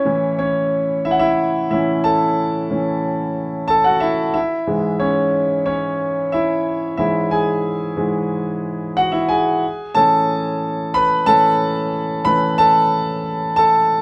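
Uplifting, hopeful pop in a steady straight four, carried for its 14.0 seconds by a solo concert grand piano that sits up front with a deep, open bass and long sustain, its chords shifting from A to C#m/G# and back to A inside a moderate studio reverb that gives the clip a live-room feel.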